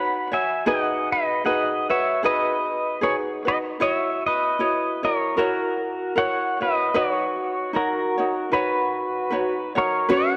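A lazy swing on the eighth notes at 76 BPM in 4/4 carries this sunny, dreamy Hawaiian excerpt in B major, drifting from Badd9 through G#m7 and F#7 and back. Up front, a clean, compressed electric pedal steel guitar sings the melody with fingerpicks, slide and volume swells, trailed by analog delay, while a mellow, light ukulele fingerpicks the accompaniment close by. At 10.1 s a warm fingerpicked steel-string acoustic guitar with fresh strings briefly adds a second line, a finger squeak audible, all set in a lush hall reverb.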